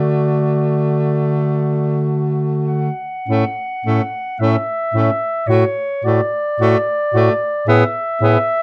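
Tender and lyrical, this brief classical excerpt for single-reed quartet unfolds in an unhurried rubato, cut from a longer piece. A mellow, up-front clarinet carries the melody over a soft-attack, close-miked alto saxophone second line, while a tenor saxophone with light vibrato and a smooth top supplies accompaniment. A roomy bass clarinet anchors the bass, all four sounding together until about 8.4 s, when the clarinet lingers alone to 8.6 s in a dark, moderately reverberant studio setting.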